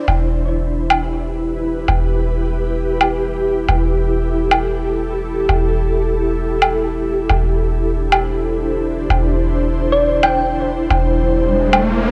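Swung sixteenths at 133 BPM in 4/4 drive this melancholic, wistful future garage excerpt in E minor, carried by an up-front, layered electronic woodblock that sounds re-recorded in a small room. Beneath it sits a soft, round 808-style bass holding a deep E1, its fast attack decaying into dark sine tones. An ethereal, airy pad sustains chords between D4 and C5, its detuned unison saws and sub octave blurred by ensemble chorus, built-in reverb and tremolo as the harmony moves from Em to Cadd9/E at 7.3 seconds. Near 9.9 seconds a tine-like, warbling FM pluck with a thumb-piano character traces a brief melody between D5 and G5, treated with chorus and tape echo, before an electronic riser enters at 11.2 seconds. A lush hall reverb surrounds the mix, while gritty hardware coloring, transformer saturation and cassette tape lend a worn grain.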